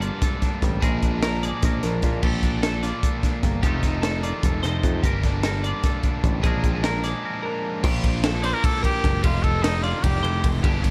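An intricate, wistful math rock and midwest emo passage in 7/8 opens with a crisp fusion drum kit, its punchy kick and high-tuned snare up front in a small, pumping room, beneath a growly picked bass, a biting double-tracked overdriven guitar riff, clean twangy guitar accompaniment and bright twelve-string arpeggios with subtle chorus. After a break at 7.2 seconds the twangy guitar stops at 7.8 seconds, and at 8.4 seconds a clear, vintage-toned trumpet enters up front with light vibrato and slapback echo for a short pop-style solo. The dark, dry production keeps the seventh-chord harmony close and intimate.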